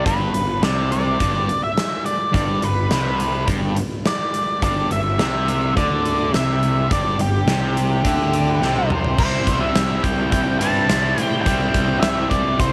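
A light studio reverb frames this swaggering, driving classic rock excerpt, with a huge arena drum kit up front, its bright cymbals, punchy kick and medium-tuned snare set in a pumping hall sound. A sludgy, double-tracked overdriven guitar riffs over a growly fuzz bass while a dark octave-fuzz lead guitar carries the melody, and the harmony moves from G5 to C at 9.2 seconds. A second, quieter fuzz lead line with tape echo sits in the background from 8.1 seconds, alongside a drum fill at 8.6 seconds.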